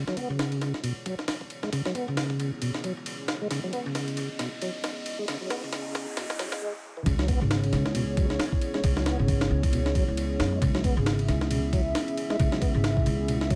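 Swaggering and gritty, this breakbeat excerpt at 135 BPM in C# minor swings its sixteenths over a single C#m7 chord, with a woody, gut-string pizzicato upright bass and a lightly overdriven tonewheel organ riff turning on a slow rotary speaker with key click from the start, while a riser and noise sweep build in the background. A compressed, pitched-up sampler-style drum kit with a thumpy kick and high-tuned snare sits up front from 0.1 seconds and plays a fill during the build-up, as a detuned, wave-folded analog pad swells in with slow-attack sustained chords that pump against the beat. After a brief break at 6.6 seconds, the drop lands at 7.1 seconds with the full groove rolling on.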